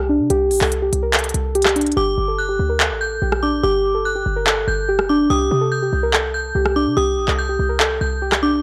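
A muted, felt-like synth keys melody opens this dark, eerie trap cut at 144 BPM in a half-time 4/4 feel, sitting up front with a soft, intimate tone softened by chorus and a low-pass filter. A short, punchy 808-style bass starts with it, each tight note decaying after a fast attack, and an electronic trap kit of handclaps, crisp hi-hats and rim clicks arrives at 0.3 seconds. At 2.0 seconds the hi-hats drop out just as a metallic FM bell enters high above as a second line, its inharmonic ringing tone stretched by a long release, chorus and analog delay. Underneath, the harmony moves from a rootless Bbmaj7sus2 to Gsus2 and then settles on Cm at 5.3 seconds. The whole fragment, cut from a longer piece, carries a dry, gritty hardware character set in a digital ambience.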